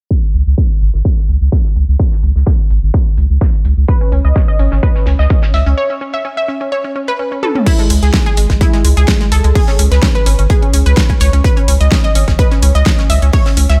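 Progressive house at 127 BPM in C# minor, this bittersweet, emotional cut from a longer piece rides a steady, straight pulse under a low-pass filter sweep that runs through its first 7.7 seconds. A punchy, up-front electronic kick with studio reverb anchors the groove, layered with an overdriven deep house kit of fat snare, hi-hat, crash cymbal and toms, while a dry, very quiet 70s acoustic kit adds a damped, rolled-off snare and hi-hat far beneath. A round, dark analog bass built from square, sine and triangle waves with a wave-folded edge holds the low end between G#1 and C#2, its sustained notes pumping through sidechain compression. At 3.9 seconds a bright, detuned sawtooth-and-pulse pluck with a noise layer enters playing arpeggios between G#3 and E5, thickened by chorus, echoed by digital delay and pumping in the same way as the bass. A break from 5.8 seconds and a drum fill at 7.4 seconds lead into a new section at 7.7 seconds, all in a close, nearly reverb-free mix.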